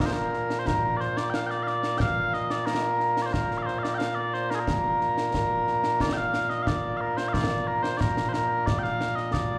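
Proud and ceremonial, this Scottish pipe music passage in Bb major moves at 90 BPM in a straight 2/4, with mellow small bagpipes carrying a sweet, continuous solo melody up front under a slapback echo, while close, acoustic concert snare and bass drums with bright cymbals play beneath, all heard as a live gig through the venue's PA with club reverb and small-room ambience, and the tune shifts into a new section at 6.0 seconds.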